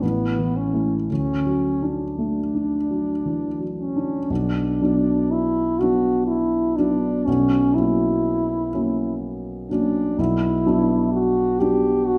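Classical romantic music for French horn and grand piano, cut from a longer piece, in which a mellow, distant-sounding horn with light vibrato sings a tender melody over a dark, intimate, vintage-toned piano accompaniment with audible action noise, moving at a slow, rubato 55-64 BPM in 3/4 and shifting from D major to B minor at 4.3 s, all bathed in a recital hall's reverb.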